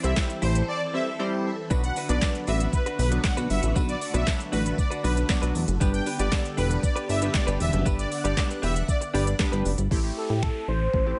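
An energetic, confident dance-pop groove at 117 BPM opens on a drop. A knocking, tape-toned R&B kit with deep snare, snaps, claps and shaker sits up front beside a punchy, funky analog bass, while a soft supersaw melody, glossy chorused retro keys and a swirling phased string machine all pump against the sidechain, joined by a clean, direct-recorded guitar riff in lush chorus. A very quiet jingly tambourine sits under a C to Bm progression. At 9.9 s a downlifter sweeps the arrangement onto Am7, and a velvety, vibrato-tinged synth lead takes the melody at 10.2 s in this short cut from a longer track, all set in light digital ambience.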